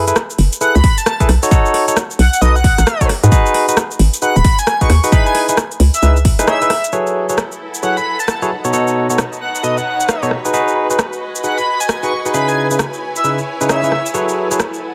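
UK garage in a skippy two-step groove at 133 BPM, soulful and swung, cut from a longer piece in F# dorian, where barky tine electric piano stabs with delay and an airy, dreamy chorused lead with vibrato ride over F#m11, B9, G#m7 and C#m7 chords. A hollow, knocking FM bass and a punchy, tape-warm electronic kick sit up front until about 6.4 seconds, while a house kit of cabasa, metallic hats and rim click carries on throughout. From 6.9 seconds a lush, distant bowed string section enters in the background with sidechain pumping, all set in light digital reverb.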